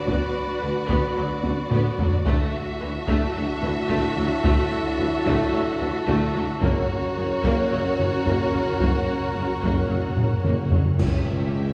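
Heroic and dark, this short cut from a longer epic orchestral film score moves in a straight 4/4 and is built on hard-stick taiko ensemble drums, with fills at 1.4 and 10.2 seconds. Two warm, lush violin sections carry the melody and a second line with expressive vibrato and a soft attack, while a smooth, even string section and an intense viola section hold sustained chords and accompaniment in the background. Underneath, a very quiet cello section, a focused double bass section and a mellow, distant tuba share the bass, joined by a very quiet, mellow French horn section on sustained chords. A dark, punchy trumpet section adds tight stabs from a roomy distance, and close, dry timpani with calf heads enter at 6.6 seconds for a fill under the move to F#. Clash cymbals and concert bass drum arrive at 11.0 seconds for a final accent on a C#dim chord, all set in wet scoring stage reverb heard from further back in the room.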